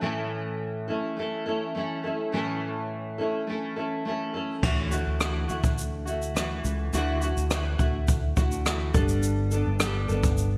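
A straight, easy-going 4/4 pulse carries this heartfelt acoustic pop excerpt. A double-tracked, full-bodied nylon-string guitar opens alone, fingerpicked with fresh strings and audible finger squeak over A, before a growly, punchy fretless bass with ensemble chorus and a brushed drum kit join at 4.6 s as the chords move to Dadd9 and then Gadd9. The kit pairs a boomy kick, rim clicks, shaker and dark crash cymbals under gated reverb, all set in a lush hall with a bright 1980s-style digital sheen.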